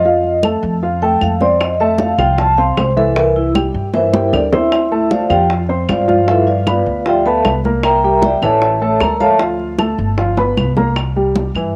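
A mellow vibraphone played with soft mallets leads this lively, sunny Afro-Cuban jazz excerpt in C major at 154 BPM, its airy, ringing tone sitting up front with a slow motor vibrato and a cassette-tape coloring, and it carries the solo melody until 9.3 seconds. Beside it, a dark upright piano plays an intimate accompaniment, slightly detuned and woody, with audible action noise. A growly pizzicato upright bass on steel strings anchors the low end. Close, dry congas sit in the background, round low-tuned bongos played with soft hands join at 1.6 seconds, and vintage, band-limited claves add a woody color. The harmony travels from F through C9, Dm7, G13 and C13 to A, Dm and G7, resolving on C, all within a light reverb and the homespun feel of a cassette recording.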